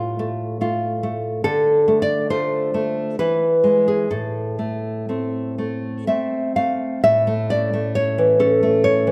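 A nylon-string guitar opens alone on an F chord over an A bass, setting a wistful, intimate tone in A minor. This is a romantic piece for solo classical guitar in 3/4, moving with a rubato feel at roughly 60 to 73 BPM. The fingerpicked guitar sits up front with an acoustic, warm tone, spanning from A2 up to F5 as the harmony passes through D minor and E before settling on A minor at 4.1 seconds. At 7.0 seconds the music turns to a new section, brightening onto an A major chord for its final moments. A moderate recital hall reverb gives the instrument a gentle sense of space around each note, and this brief passage, cut from a longer piece, ends at 9.1 seconds.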